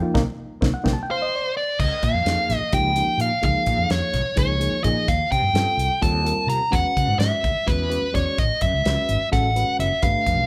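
Electric jazz fusion in 7/8 at 255 BPM counted in eighths, this nocturnal, slick excerpt opens with a band accent over Cm7, capped by a drum fill, before the dark, overdriven lead guitar takes the melody up front from 1.1 seconds. Beneath it, a reedy, worn electric piano with fast tremolo, slightly out of tune, comps through chords moving from Db69 to Amaj9, while a growly, punchy fretless bass anchors the low end. A damped 70s kit with a fat snare, tight kick and dark cymbals keeps things dry, and the band sounds live in one room with light reverb.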